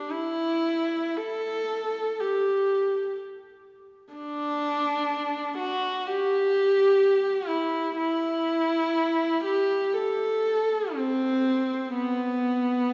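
Serene and lyrical, this classical fragment is cut from a longer piece for unaccompanied viola and unfolds in free, expressive time in G major, tuned to A4 = 441 Hz. A single player carries the whole 12.9 seconds alone, keeping to a compact range from B3 to A4. The viola's tone is rich and intimate, shaped by light vibrato, soft attacks and an airy sul tasto bow that gives each phrase a hushed, breathy quality. The instrument sits close and up front, yet the listener seems placed further back in a church, whose lingering reverb with a 2.9-second decay lends the line a glowing halo. The result is a calm, contemplative moment of solo string song suspended in a resonant space.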